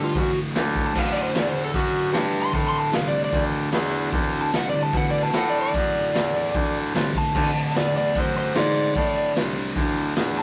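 Blues rock power trio with a southern rock edge, this driving, raunchy excerpt at 150 BPM in D mixolydian sets a dark, overdriven slide guitar soloing over a D chord against a thick, double-tracked fuzz guitar riff, a clear, smooth-topped baritone saxophone carrying the bass line up front, and a raw garage drum kit that enters at 0.1 s with punchy kick, medium-tuned snare, hi-hat and crash in a pumping small room, its gritty, rolled-off top fitting the rough rehearsal-room sound with light reverb and saturation.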